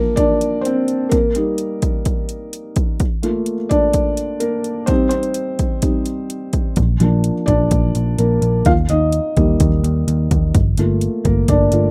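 A rough home-demo mix with light reverb opens on a felt-muted upright piano, intimate and mellow, its action noise audible under a plate reverb as it carries the chords of this uplifting, hopeful piano-driven pop piece in Bb major at 127 BPM. An overdriven deep house drum kit, with a punchy kick and metallic hats, sits up front from 0.2 s. A dark, round, foam-muted electric bass joins at 6.8 s, lending an amped low end to the hopeful progression.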